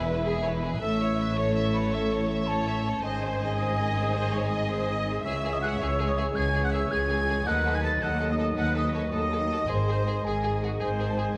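Cinematic orchestral cue, swashbuckling and adventurous in a straight 12/8, where a focused chamber violin section carries the melody alongside an airy, distant flute and lush background violins, even violas supply accompaniment, dark horns and a very quiet trombone section hold sustained chords, a roomy solo trumpet adds stabs, and cellos and double basses anchor the bass, all within a moderate scoring-stage reverb.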